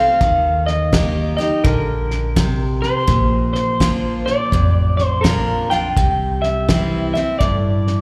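A twangy electric guitar through a small old amp carries the melody, its slightly broken-up, lo-fi tone sitting up front with slapback and tape echo. This is an 8-second slice of honky-tonk and classic country at 84 BPM in 4/4, swung on the eighth notes, with a down-home, nostalgic mood. A bright, full-bodied jumbo steel-string acoustic guitar, picked and also carrying slapback echo, plays accompaniment from the start, while a woody, thumpy pizzicato upright bass and a cloth-damped drum kit with a fat snare, tight kick, hi-hat and rolled-off top join at 0.2 seconds. The chords move from Eb to Bb at 3.1 seconds and then to C at 6.0 seconds. It sounds like a live club gig heard through the venue's PA, with light reverb and small room ambience.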